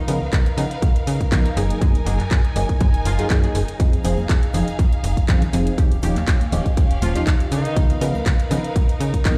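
A snappy, metallic FM slap bass and a tape-tinged house kit of handclaps and hi-hats open this sensual, nostalgic filtered disco house excerpt at 121 BPM with a light 16th-note swing, joined just after by a punchy, up-front electronic kick, with sidechain pumping breathing through the bass, kit and harmony parts. A nasal, detuned polysynth comp with chorus and phaser and a lush, bowed symphonic violin section carry the harmony through Db13, Gb69, Fm7 and Eb9 chords, while a bright, tight horn section with tape echo offers brief octave-doubled lines, most fully around 7.0 seconds. From 3.8 seconds, egg shaker and congas sit in the background, and the whole mix carries a stone-room reverb as if played on a big sound system in a bare room.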